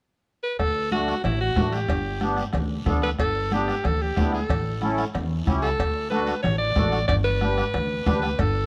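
A straight 4/4 cumbia groove at 185 BPM in D major drives this sunny, joyful excerpt, where an edgy alto saxophone with scooped notes takes the melody up front from 0.4 s over a woody pizzicato upright bass, a sweet, reedy accordion with light tremolo tuning, and background bombo, bright damped congas, ringing cowbell and timbales, and a raspy guiro, all coloured by light reverb and the worn, warbling pitch drift of old cassette tape.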